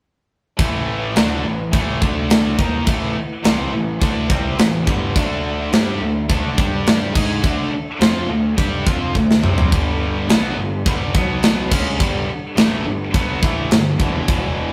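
Powerful and energetic, this hard rock excerpt at 105 BPM drives a straight 4/4 riff through power chords on A, D, G and B, with three bright, distorted, picked guitars (one high-gain, one double-tracked) sitting in the background beside a punchy, fuzz-overdriven picked bass. Up front, a tight metal drum kit with an airy big-room sound, bright cymbals, a medium-tuned snare and a tight kick carries the groove and throws in a fill at 9.1 seconds. Beneath it all, a very quiet, flute-like tonewheel organ holds soft sustained chords through a slow rotary speaker with audible key click, and the whole take has a rough rehearsal-room feel with tube saturation and light reverb.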